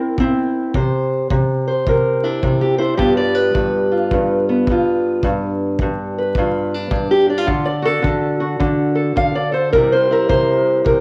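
A dark, boxy fingerpicked steel-string parlour guitar carries the melody up front in this laid-back, swaggering acoustic country blues in G mixolydian at 107 BPM with a swung feel, joined at 0.2 s by a distant, punchy kick drum in a roomy studio space, all colored by cassette tape, vinyl crackle and light reverb in a homespun recording cut from a longer piece.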